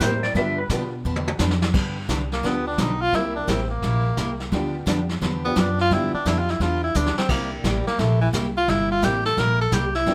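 Set in a moderate club reverb, this down-home, swinging western swing country piece at 173 BPM in G mixolydian opens with a twangy, clean lap steel guitar melody that lasts only until 0.7 s, over a jangly, detuned honky-tonk upright piano, a bright, full-bodied picked steel-string acoustic guitar with finger squeak, an up-front pizzicato upright bass, and a vintage brush drum kit with dark cymbals, a punchy kick and short fills, before a clear tenor saxophone with vibrato and subtone takes a jazz-style solo from 2.3 s over G7 and C7 changes.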